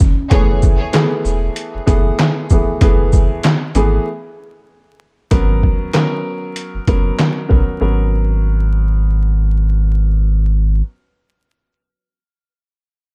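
Boom-bap hip-hop with a dark, moody trip-hop shade, cut from a longer piece and set at 96 BPM with a swung 16th-note feel over F#m11 shifting to G#m11. A deep, round dub sub bass and a compressed, pitched-down, muffled sampler-style kit with a thumpy kick, medium-tuned snare, handclaps, hi-hat and shaker sit up front, the overdriven drums dropping out at 7.7 seconds. A natural-toned baby grand piano with a cassette-tape colour plays accompaniment from 0.3 seconds onward, a focused bowed string-section stab with vibrato and digital delay flashes by at 0.3 seconds, and a dark studio reverb and vinyl crackle give the mix its warm, dusty air.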